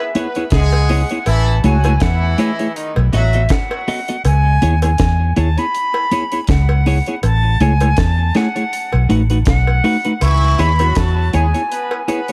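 Vinyl crackle and light reverb frame this meditative, serious stretch of roots reggae, cut from a longer piece, moving at 80 BPM in C# minor with a gently swung sixteenth feel over a C#m7, Amaj7 and B7 cycle. A pure, distant silver concert flute with vibrato and a crisp attack carries the melody through tape echo, while a clear, roomy horn section adds a second line at the start and returns at 10.2 seconds. Underneath sit a dry drum kit with a high-tuned snare and a tight kick, a round, punchy muted electric bass up front, a clean, compressed picked electric guitar, and cowbell and jawbone-type rattle tucked in the background.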